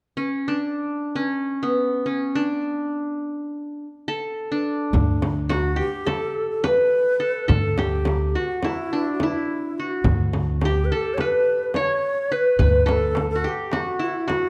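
Festive and passionate, this fragment of a Turkish makam ensemble piece in D makam rast moves at 212 BPM in eighths over a straight 9/8. A mellow, bright-edged qanun with plucked triple strings sits up front and plays the melody alone from 0.2 seconds. At 4.9 seconds a woody, thumpy pizzicato upright bass enters on a low D, along with a crisp metal-shelled darbuka played with soft hands and a deep, compressed, saturated frame drum struck hard. At 5.5 seconds a breathy, unsteady low ney adds a tongued second line with vibrato, all within a dark production and light reverb.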